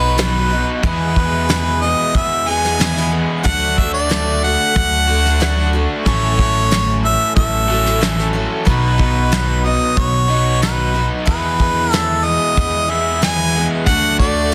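A clear, up-front harmonica carries the melody from the opening moment, its lightly vibrato-tinged, scooped notes riding over a bright, shimmering picked twelve-string acoustic guitar, a double-tracked overdriven electric guitar riff and a woody, growly pizzicato upright bass, with a soft brush drum kit joining at 0.2 seconds. This cut from a longer folk rock and heartland rock piece moves at a straight 92 BPM in 4/4, in E major, with an open-road, nostalgic mood. The airy small-room kit pairs a fat snare and punchy kick with hi-hat, all played with brushes. The chords cycle through B, E, D and A6 before returning to B, E and D. At 8.7 seconds a very quiet, flute-like tonewheel organ with key click and rotary speaker adds sustained chords beneath the harmonica. Light reverb sits over a dense, heavily limited modern master.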